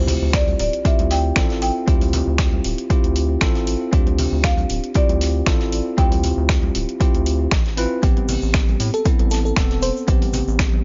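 A very quiet electronic impact opens this hypnotic, late-night deep house excerpt alongside a woody, hard-mallet marimba melody, bell-like tine electric piano stabs with sidechain pumping and delay, and a round, dark analog bass given tube saturation over Dm11 moving to Am9 at 8.0 seconds. An up-front, overdriven electronic kick anchors a swung groove of dry analog drum-machine snaps and hi-hat, background hi-hat and snare from a big acoustic rock kit, and compressed, saturated congas, with a grainy egg shaker arriving at 8.0 seconds. At 8.9 seconds a sparkling FM electric piano adds a brief melody through chorus, phaser and digital delay, all set in a small, dull room.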